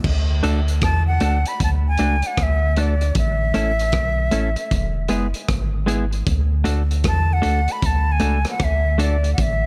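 An airy silver concert flute carries the melody up front, its unsteady vibrato and tongued notes trailing dub echo as it enters at 0.8 seconds over a meditative, hypnotic roots reggae groove at 77 BPM with a swung sixteenth feel. A round, deep sub bass sits prominently beneath, while a clean, compressed semi-hollow electric guitar, also soaked in dub echo, fills in the accompaniment. A gritty, saturated breakbeat kit with dark cymbals, tight kick, hi-hat and rim clicks keeps time as the chords move through D, A, E and back to D in this short fragment of a longer piece.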